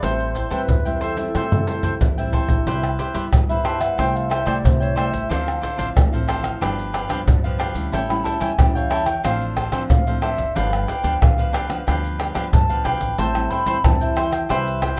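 Samba and choro with a bittersweet, nostalgic mood, cut from a longer piece, where an airy, reedy wooden baroque flute with vibrato and tape echo takes a tongued solo from 2.7 seconds over crisp picked cavaquinho, a full-bodied fingerpicked nylon-string guitar and a woody pizzicato upright bass in the background, after up-front maracas, tight surdo, pandeiro and tamborim, played with hard hands, lead into it with a drum fill from 1.4 seconds, all in a rough home demo mix with light reverb.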